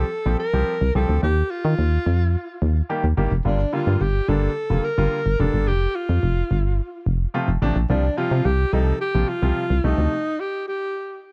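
A straight dance-pop pulse drives this energetic extract, anchored by a punchy, round FM bass that sits up front over a Csus4, Eb, Gm7 and F progression. A polished baby grand piano supplies present accompaniment, while a breathy, whispered alto saxophone carries the intimate, vibrato-tinged melody through a touch of delay. At 10.1 s the bass and piano stop, leaving the saxophone alone until 11.2 s, all within a dark, warm mix and light reverb.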